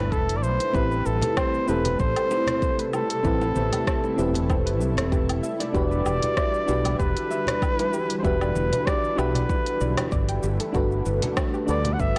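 Smooth and wistful, this sunset chillout fragment sets an up-front, close-miked flugelhorn melody with vibrato, scooped notes and tape echo over a mellow FM electric piano, a shimmering, ethereal ambient pad with 12-bit sampler grit in the background, a round, dark fretless electric bass with tube saturation, a deep house drum kit of smooth hats, rim click, shaker and woodblock over a deep electronic kick, bright compressed bongos and congas tucked behind, and a very quiet pluck playing arpeggios from 0.7 seconds, all in a blown-out, overdriven recording with light reverb.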